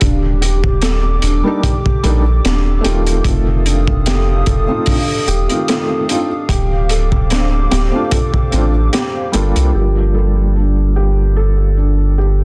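Melancholic and smoky, this trip hop excerpt in G minor moves at 74 BPM with a light 16th-note swing, carried by a crunchy, saturated breakbeat kit with a tight kick and high-tuned snare, a round, deep dub sub bass, and a detuned, wave-folded analog pad holding sustained chords under chorus and 12-bit sampler grit. A felt-muted upright piano plays mellow arpeggios through a low-pass filter and tape echo, its action noise audible, while a second, boxy felt piano enters at 1.4 seconds with tremolo-treated accompaniment. The drums stop at 9.7 seconds as the harmony settles on Gm7 and a filter sweep moves over the felt piano, all within a small room ambience and a dense, heavily limited master.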